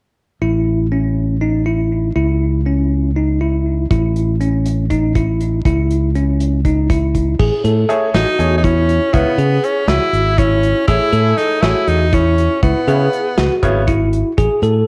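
Lightly reverberant home cassette audio frames this bright, intricate progressive instrumental in 7/8, where a bell-like tine electric piano with tape echo spins arpeggios over a growly, up-front fingered electric bass from the start, a smooth, dark drum kit with a punchy kick joins at 3.9 seconds, and a brilliant, worn grand piano with audible action noise enters at 7.9 seconds just before an edgy tenor saxophone takes the melody with vibrato and scooped notes, in this excerpt cut from a longer piece.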